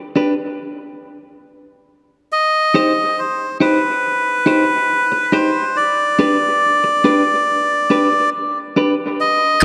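A moderate plate reverb with a three-second tail surrounds this short dub reggae passage cut from a longer piece, giving it a heavy, meditative air at 70 BPM in a straight 4/4. A clean electric guitar opens at 0.2 seconds in a bright, twangy, compressed voice, picked up front with spring reverb and dub echo, and the music drops into a stop from 0.6 to 2.3 seconds over a G chord. At 2.3 seconds the melodica enters with the melody as the harmony moves to C minor, its reedy, breathy, nasal tone close-miked and full, its wooden-case character heard up front with dub echo trailing its lines. The guitar carries on as accompaniment beneath it in C harmonic minor, and the chord returns to G at 5.8 seconds. Both parts play through to 9.6 seconds, the melodica sitting a touch louder than the guitar.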